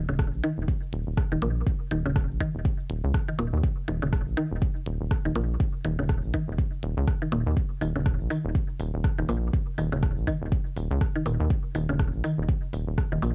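Clinical and hypnotic, this minimal techno cut from a longer piece swings its sixteenths over a deep, up-front electronic kick and a sparse click kit of cabasa, clicky hi-hat and rim click, both carrying a cassette-tape grain. A rubbery, hollow square bass with tube saturation and sidechain pumping bounces low and dark from the start, while a woody, mallet-like synth pluck plays a riff through analog chorus and analog delay, with sidechain pumping of its own. The sound is dry and close, like a home cassette recording.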